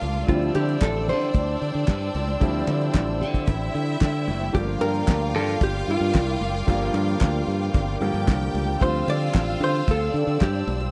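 A straight 4/4 disco groove at 113 BPM drives this celebratory, glamorous excerpt, built on a damped, fat-snared 70s drum kit up front and a bright, growly fingered electric bass, while a dark, compressed hollow-body jazz guitar with slapback echo carries the melody from 0.3 seconds over Dm11 and Gm7 chords, supported by a clear grand piano in the background, a focused string section playing a second line, a woody, dark string section holding sustained chords, very quiet ringing congas, and crisp group handclaps, all in a dry, close 1970s-style studio sound.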